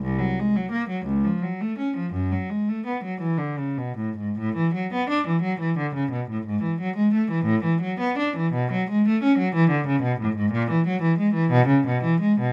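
A single bowed cello plays alone from the start, rich and focused with a smooth top and vibrato, in an unaccompanied baroque-style suite movement that feels dance-like and flowing. It moves in 6/8 at roughly 49-61 beats per minute in dotted quarters, with free rubato, opening in F# minor and turning to A major at 4.4 seconds. The close, detailed recording has little reverb and places the instrument up front, and this excerpt is cut from a longer piece.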